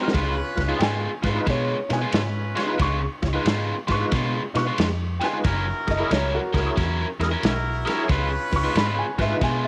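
Tonewheel organ, lightly overdriven with key click, chorus vibrato and a slow rotary speaker, opens this swaggering, gritty electric blues shuffle at 90 BPM in Db mixolydian, alongside a bright, overdriven, up-front garage guitar riff. A muffled, lo-fi drum kit with dark cymbals and a tight kick, a round, punchy foam-muted bass with tube saturation, and tight, brilliant horn stabs with light vibrato join at 0.1 seconds, swinging over a Db7 to Gb7 change. A dark, woody upright piano with short sustain enters at 0.8 seconds to take a mellow solo, all in light reverb.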